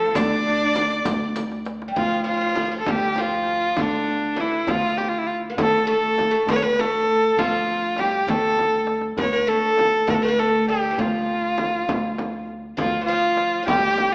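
A clear, focused kamancheh leads up front with vibrato, portamento and a tape echo, carrying the longing, soulful melody of this Persian modal ensemble excerpt in 6/8 at 66 BPM in D avaz esfahan, over a woody, fretless oud in the background, a growly pizzicato upright bass holding D2, a deep frame drum struck with hard hands and a very quiet tombak under soft hands, while a smooth bowed cello and a dark-jingled riq appear only in the opening, drum fills land at 1.4 and 8.6 s, and the ensemble sits in a wet recital hall reverb with a small-speaker sound.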